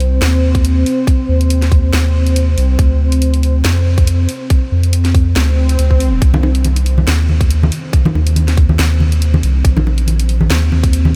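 A round, deep sub bass sits up front through this heavy, brooding deep dubstep excerpt in C minor, moving at 140 BPM in a swung half-time feel beneath a warbling, detuned pad with chorus and its own reverb, while a tight electronic kick arrives at 0.5 seconds to join a garage kit's cracking snare and hi-hat, already playing from the start. A background electronic swell runs from 5.5 to 6.2 seconds, just before bright, soft-handed congas and bongos with dub echo join at 6.3 seconds, and the chords move from Cm through Dm and back to Cm before settling on Bbsus4, all set in light digital ambience.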